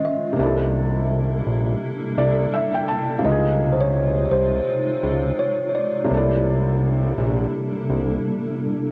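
Lo-fi hip hop at 84 BPM with a swung 4/4 feel, cosy and dreamy, heard as a short cut from a longer piece. A felt-muted upright piano with audible action noise comps alongside a blurred, granular cloud pad of detuned chords, while a woody kalimba carries a small plucked melody through tape echo and a fat, nasal analog bass sits up front from 0.4 s. The harmony moves from C13 to Dbmaj7 and back, a brief piano fill arrives at 1.8 s, and the whole is set in light reverb with the intimate, hazy character of a cassette home recording.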